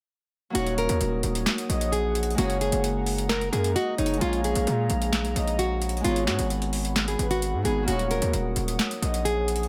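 Hard-hitting and brooding, this half-time trap excerpt sets a full-bodied, fingerpicked nylon-string guitar melody with delay against a bright, ringing Celtic harp and a soft, breathy flute-like synth lead with chorus, vibrato and delay sitting in the background. Beneath them, a booming analog drum machine drives crisp snare, metallic hi-hats and handclaps up front, while a distorted, aggressive 808-style bass hits heavy and saturated over a digital ambience. A dark, detuned analog pad with chorus and phaser enters at 1.1 seconds, holding moody sustained chords that move from Ebm7 through Gbadd9, Bbm7 and Abm7.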